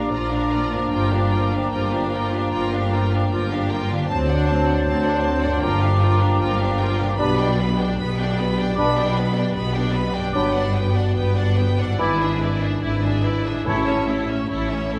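Classical music for full symphony orchestra, this slow romantic movement is serene and warm, moving at 71-79 BPM in 4/4 with a rubato feel, cut from a longer piece. A lush, focused violin section carries the melody from 0.0 s, with vibrato and a smooth top, while a more distant violin section sits in the background on a second line. Around them, a warm solo oboe, a mellow, roomy clarinet and an airy flute section with a crisp attack add further lines, as a mellow bassoon, an intense viola section and a dark French horn section hold sustained chords and accompaniment. The cello section sings the bass with expressive portamento over a bowed double bass section, and a very quiet concert harp rings out fingerpicked arpeggios. The harmony drifts from Bb through Gm7, D7 and Gmaj7 to E7/G# before settling on A at 13.7 s, where articulate timpani struck with hard mallets enter. A reverberant hall gives the ensemble a spacious, glowing sound.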